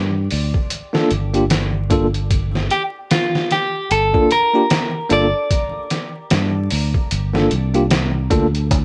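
A clean, picked electric guitar carries the melody through a dub echo over a growly, up-front fingered bass, gritty pitched-down sampler-style drums with a thumpy kick, and a bell-like tine electric piano with tremolo and a low-pass filter holding a single Gm7 chord in this smoky, hypnotic trip hop excerpt in G minor at 75 BPM with a swung 16th feel, dry with vinyl crackle, as a deep clay darbuka sounds only at 8.7 seconds.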